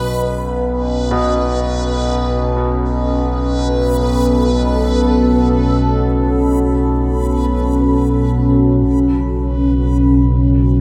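A cavernous, desolate dark ambient drone in free time, cut from a longer piece, opens with a deep, detuned sawtooth pad holding sustained chords, a nasal, pulse-width-modulated analog drone up front, and a reversed, granular swelling texture, with the drone and texture fading in together; a brilliant grand piano plays tape-echoed arpeggios from 1.1 to 8.9 seconds, the drone takes a filter sweep from 8.9 seconds, and spring reverb gives the mix an echo-heavy space.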